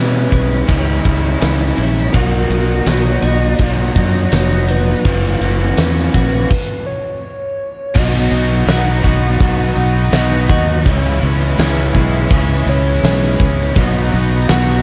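A soft, warbling sine lead with chorus and digital delay sings a wistful melody over a mellow, very quiet organ-string pad, a faint twelve-string electric arpeggio, two picked overdriven guitar riffs (one biting with analog chorus, one crunchy with reverse reverb), a round, up-front fingered bass, a background tambourine and a huge arena drum kit with a fat snare and punchy kick, in this dreamy 83 BPM B major shoegaze excerpt whose band stops at 6.5 seconds before a bright, double-tracked overdriven guitar joins at 7.9 seconds in a dark small-room mix.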